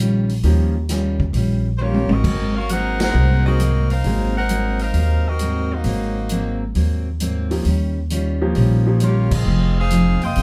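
A woody, up-front pizzicato upright bass anchors this brassy, energetic big band swing fragment, joined by a dark, picked dreadnought acoustic guitar with audible finger squeak and a drum kit with a punchy kick and medium-tuned snare. A clear saxophone section takes the melody with light vibrato at 1.8 seconds, entering together with a drum fill. An intimate baby grand piano with audible action noise and long sustain comes and goes, band accents punctuate the phrases over Eb9, Ab9 and Fm7 chords, and the band is heard from further back in a lively club room.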